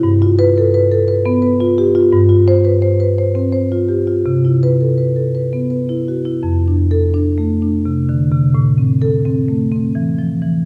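Flowing and playful, this contemporary classical passage for solo marimba, cut from a longer piece, moves at 85 BPM in a straight 3/4, with the full, close-miked marimba sounding up front under medium mallets across F2 to C5 as the harmony drifts from G9 and Cmaj7 in C major to F6 and Am in F major from 6.4 s, tuned to A4 = 445 Hz and set in a recital hall reverb of 1.6 s.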